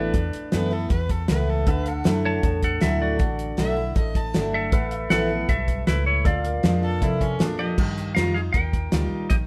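A straight 4/4 beat at 157 BPM drives this sunny, nostalgic honky-tonk and classic country passage in A mixolydian, cut from a longer piece. Up front, a cloth-damped, thuddy drum kit plays kick, snare, hi-hat and crash, with a fat snare, tight kick, dark cymbals and a gritty, saturated, rolled-off character. A round, foam-muted vintage electric bass sits low and dark under a bright, full-bodied dreadnought acoustic guitar, whose picked accompaniment carries audible finger squeak. The melody comes from a twangy, compressed, scooped clean electric guitar, while a bowed fiddle with light vibrato, an airy, biting and somewhat nasal, boxy tone enters at 0.5 s as a second line and returns briefly at 6.8 s. In the background, a fingerpicked pedal steel adds sustained slide chords with volume swells until 7.8 s, as the harmony moves from Asus2 and Dadd9 to Bb7 and lands on Ebadd9, all set in a moderate studio reverb.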